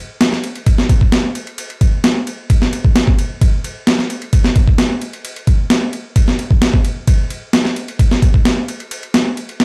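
Swaggering and raw, this short breakbeat excerpt in a straight 4/4 feel is carried entirely by a sampler-style drum kit that enters at 0.2 seconds and runs to the end. The kit sits up front with a thumpy kick, a medium-tuned snare and a ride cymbal, its sound compressed, gritty and overdriven, as if re-recorded in a small room. The mix stays dry, with little reverb.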